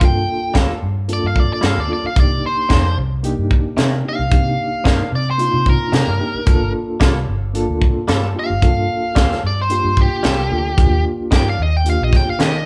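Smoky and soulful, this straight-eighth soul blues in G minor moves at 111 BPM in 4/4 and is cut from a longer piece, with the band playing live together in one room. A biting, overdriven guitar carries the melody as a solo across the whole 12.7 seconds, sitting up front and ranging from G4 to G5. Beneath it, a reedy electric piano with fast tremolo comps through its built-in speakers, while a dark, foam-muted fingered bass gives round, punchy low end from G1 to Eb3. A tight funk drum kit with a high-tuned snare and a compact kick drives the groove on hi-hat, kick and snare, and from 0.5 seconds a bright, twangy clean guitar, recorded direct and compressed, adds picked stabs bathed in spring reverb. The harmony moves from Gm9 to Cm9, back to Gm9 and on to Ebmaj7, all wrapped in a moderate large studio reverb.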